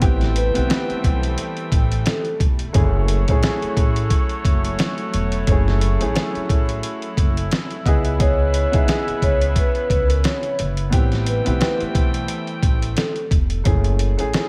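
Gritty, thumpy sampler-style drums sit up front in this tough, reflective boom-bap hip-hop cut at 88 BPM in F# minor, swung on the 16ths over a woody pizzicato upright bass, a dark, mellow upright piano with a cassette-tape tint, faint sul tasto strings floating in the background, tight, bright saxophone stabs with tape echo, and an airy vibraphone melody that appears at 0.4 seconds and returns at 8.2 seconds, all set in a small room with vinyl crackle.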